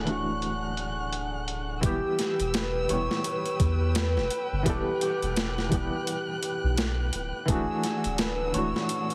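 Trip hop at 85 BPM with a 16th-note swing, dark and hypnotic, cut from a longer piece: a shimmering, ringing cimbalom carries the melody through gritty 12-bit sampler texture and tape echo over a felt-muted upright piano with tremolo, audible action noise and a filter sweep in the first 1.8 seconds, while a dark, vibrato-laden violin section holds sustained chords, a round, deep dub sub bass sits up front until 8.7 seconds, and a pitched-down, overdriven boom bap kit with a thumpy kick and high-tuned snare stands up front as well, all moving from Dadd9 to Em and back in a small room with a heavily compressed radio sound.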